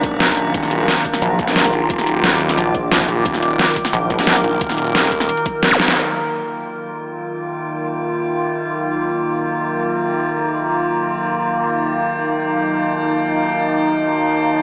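Heard through a small speaker in a moderate lush hall reverb, this dark, mechanical technical drum and bass excerpt in Eb harmonic minor at 177 BPM opens on a drop over an Ebmadd9 chord. Overdriven up-front snare and bright hi-hats ride a knocking electronic kick, while a swirling phased detuned saw bass pumps beneath an eerie ring-modulated metallic drone and a deep, moody ambient pad, joined by a pulsing, heavy, chorused wobble bass. A drum fill and an electronic zap at 5.7 seconds close the drop, after which only the drone and the pad continue to 14.6 seconds.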